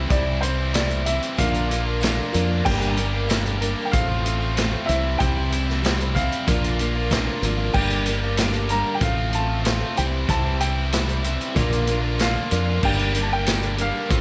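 A steady, straight 4/4 pulse at 94 BPM drives this wistful, dusty excerpt of folk rock and heartland rock in G dorian, cut from a longer piece. A vintage acoustic drum kit with a punchy kick, medium-tuned snare, hi-hat and dark crash cymbals sits alongside a jingly, very quiet tambourine, both entering at 0.1 seconds. Underneath, a deep, round fingered electric bass stays up front, while a full-bodied dreadnought acoustic guitar is picked through the accompaniment and a biting, double-tracked overdriven guitar carries the riff. A clear baby grand piano with long sustain plays the melody in its upper register, with a mellow, reedy electric piano shimmering with fast tremolo in the background. The chords cycle through C, Bb, Gm and F/A under light reverb.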